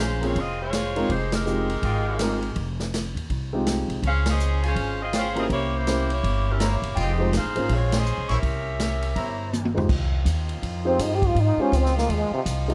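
A bright, loose saxophone section carries the melody over woody pizzicato upright bass from the opening, with a polished grand piano of short sustain and a vintage drum kit with dark cymbals and a punchy kick joining almost at once in this swinging, brassy big band jazz excerpt. A tight trumpet section with a smooth top adds stabs, and the band hits accents together at 1.3, 4.2 and 7.9 seconds. After a drum fill, a close-miked trombone with a plunger mute takes a wah-wah solo over sustained, soft-attack chords from a clear second saxophone section, set in a light reverb.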